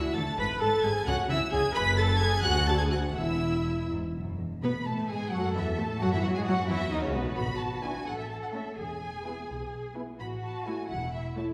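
Bowed strings enter within a fraction of a second of each other in a lively, graceful classical-period movement in 6/8 with rubato, the first violins carrying a focused, vibrato-rich melody above a lush second-violin line. Up front, the violas supply smooth, even accompaniment, while expressive cellos with portamento join the double basses on the bass. A wet recital-hall reverb surrounds this short excerpt, whose harmony moves from G#m and C#madd11 through a pause in the chords at 3.2 s before a second pass settles onto A, E and A.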